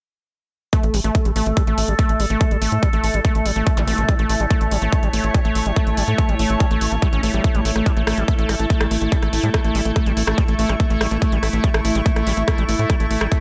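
Psychedelic trance at 143 BPM in A major, hypnotic and cut from a longer piece, with a punchy overdriven electronic kick up front alongside bright overdriven hats and rim clicks in a small room, a dark, tight sequencer bass plucking from A1 to A2, a squelchy, gritty acid bass riff with tape echo, a nasal, chorused drone of sustained chords with moving overtones, a cloudy granular pad drifting in at 2.7 seconds, and brief electronic zaps and a reverse cymbal tucked in the background, the drone, acid bass and pad all pumping to the sidechain.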